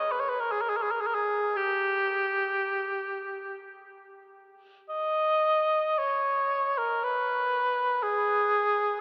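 A mellow cor anglais plays alone and up front throughout this short classical fragment, its light vibrato, soft attack and smooth top lending a meditative, yearning voice to a free, expressive line set between G4 and D#5. The rubato pulse drifts between 50 and 62 BPM in 3/4, and the nine-second passage is cut from a longer piece. A cavernous cathedral reverb with a 5.1-second decay surrounds the instrument, while an AM radio tone narrows and colours the sound.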